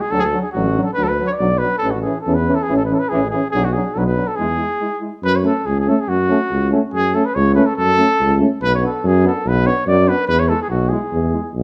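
A mellow trumpet with light vibrato and a soft attack opens this exuberant, wild Balkan brass band fragment at 142 BPM in a swung 2/4, carrying the melody up front while a warm, roomy tuba with light vibrato drives the bass just as prominently. Behind them, a clear, close-miked trombone and a distant euphonium with vibrato fill in the accompaniment in a classical style, all four playing live together in a large studio with moderate reverb. The harmony moves from D through A, Bm and E, and after a short break at 4.8 seconds the second section settles on F#m at 5.2 seconds before returning through Bm to E.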